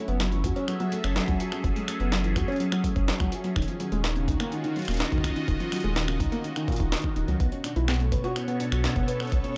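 Glitchy and eerie, this IDM excerpt moves at 125 BPM in 4/4 with a straight feel in F# minor, cut from a longer piece. A felt-muted upright piano plays soft, dark arpeggios with audible action noise and tape echo, while a phased analog pad holds swirling, detuned sawtooth chords thickened by chorus. Underneath, a round sine sub bass sustains the low end through chords moving from F#m7 to D#m7 and then to a B7 that omits its third. The drums pair a jungle sampler-style kit of finger snaps, hi-hat and a medium-tuned snare with an electronic kick entering at 0.4 seconds, both pitched up, compressed and overdriven, with the thump and grit of a large room. Near the close, at 7.8 seconds, a flickering granular texture with its own reverb drifts in far in the background. The overall sound is dry and gritty, like a hardware recording.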